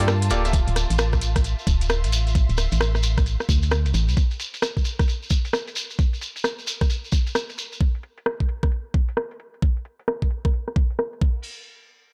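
Skippy and soulful, this two-step UK garage fragment swings its sixteenths with a loose, shuffling bounce. A brilliant, polished grand piano opens with short stabs carrying dub echo, and at 0.5 seconds an overdriven, knocking electronic kick arrives up front and stays to the close. Beside it, a layered garage kit of crash, rim click and metallic, low-pass-filtered hats runs throughout with grit and a filter sweep. A hollow, organ-like FM bass with a fast, percussive attack and tube saturation anchors the Gm9, Dm9 and Am9 harmony, while a distant, woody string section with lush vibrato pumps softly underneath and fades out, both parts ending at 4.2 seconds. A grainy, mellow shekere adds live-room texture until 7.8 seconds, the chords drop away at 7.6 seconds, and the drums carry on in a small room.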